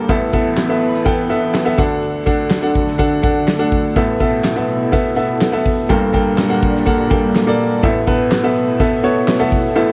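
Piano-driven pop with an uplifting, hopeful mood, this short cut from a longer piece moves at 124 BPM in a straight 4/4, tuned to A4 = 442 Hz. A bright, woody upright piano sits up front and carries the accompaniment across a broad range, its polished tone ringing with long sustain. Behind it, a lush unison pad of detuned sawtooth and square waves holds thick, slow-attack chords, colored by chorus and phaser and kept in the background. A huge arena drum kit enters at 0.1 seconds with a punchy kick, fat snare, hi-hat and handclaps, sounding natural and big-roomed while staying up front. The harmony moves from Asus2 to D, back to Asus2, then to Gmadd9 before returning to Asus2. The dry, close production has a 1970s studio character with little reverb and a layer of vinyl crackle.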